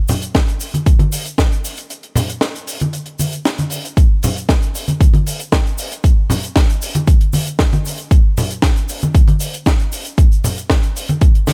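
A studio reverb gives the mix a shared sense of space. This groovy, sunny nu-disco passage, cut from a longer piece, moves at 116 BPM in a straight 4/4 and is built entirely from rhythm parts. A tight funk drum kit enters at 0.1 seconds with hi-hat, shaker and a high-tuned snare, its acoustic tone kept dry. Cabasa and congas arrive at the same moment and sit up front, bright and saturated, with hard hands and a compressed edge. A punchy, layered electronic kick drum joins at 0.3 seconds, tape-warm and prominent in the mix, and carries through to 11.3 seconds, while a break falls between 1.9 and 4.0 seconds.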